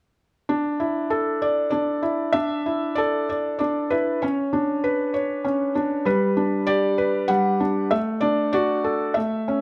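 Children's lullaby in D major and 3/4 at 97 BPM, this innocent, sleepy fragment of a longer piece features a solo felt-muted upright piano, soft and intimate with audible action noise, captured close and up front under light reverb as it moves from Dsus2 through Bmadd9 and G to D/A within a G3 to F#5 range.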